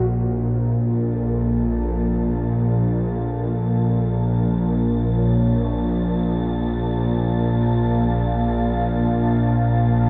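A tense, string-like bowed drone sits up front for the full 10.1 seconds of this desolate, ominous dark ambient excerpt, joined by a breathy, wind-like tuned noise texture from 0.9 seconds and a deep, moody pad of sustained chords fading in from 1.8 seconds, while a mellow, horn-like synth lead with warbling vibrato, lush chorus and delay carries a distant melody until 6.2 seconds, the whole mix soaked in dreamy plate reverb.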